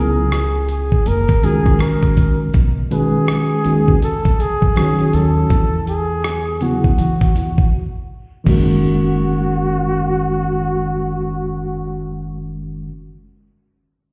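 Cool and smoky, this jazz-hop fragment of a longer hip hop piece rides a swung 4/4 groove and sounds as if heard muffled through a wall, wrapped in stone room reverb and small room ambience. A worn, slightly out-of-tune tine electric piano sits up front, its clean accompaniment coming through built-in speakers as the harmony moves from C#m7 through F# and B69 to Eadd9. Beneath it, a woody pizzicato upright bass with steel strings anchors the low end. An up-front sampler-style drum kit, gritty, compressed and re-recorded in a small room, brings a thumpy kick, hi-hat, rim click and crash cymbal from 0.3 seconds, with a short break arriving at 7.7 seconds before the drums stop at 8.7 seconds. Over the top, a breathy, whispered flugelhorn carries the solo melody in a mellow, intimate jazz style, with vibrato, a soft attack and a slapback echo, as the harmony returns to F# for the closing stretch.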